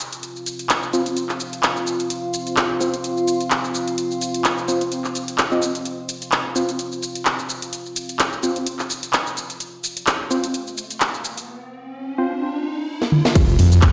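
A big, reverberant room sound wraps this gritty, swaggering bass house excerpt at 128 BPM, which swings its sixteenths over an F5 harmony. A tape-warm garage drum kit sits up front from the start, with a cracking snare, handclaps, hi-hat, shaker, toms and crash cymbal. A deep, moody sawtooth pad with a sub octave and slow attack breathes under sidechain pumping and chorus, while a hollow, organ-like stab, wave-folded and decaying, cuts through with digital delay as a filter sweep runs across it. From 10.8 seconds a riser builds, a drum fill follows, and at 13.4 seconds an impact lands as a heavy, saturated wobble bass and a tight electronic kick drum burst in together, the bass sitting loudest in the mix.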